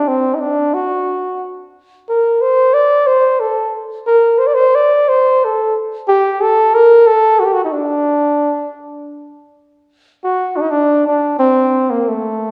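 A breathy flugelhorn carries this Persian excerpt entirely alone, its mellow tone shaded with light vibrato and a jazz-inflected phrasing that sounds passionate and festive in a straight 6/8. Sitting present and up front, the horn ranges from A3 to D5, moving into a new section at 9.7 seconds before the cut at 12.5 seconds. A lush recital-hall reverb with a 1.7-second decay surrounds the playing, giving it the resonant air of a church or concert hall.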